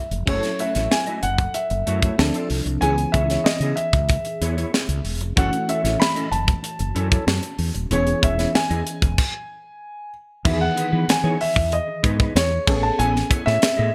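Bright 1980s-style digital production with light reverb frames this upbeat, urban jazz-funk pop excerpt at 94 BPM in E major, where a dark, intimate grand piano with audible action noise carries the melody over glassy, bell-like FM electric piano chords with chorus, a clean, fingered electric guitar riff also treated with chorus, a round, punchy fretless bass and a tight, up-front funk drum kit with a high-tuned snare and dark cymbals, before a stop at 9.2 s gives way at 10.5 s to a new section moving from Emaj7 to Amaj9.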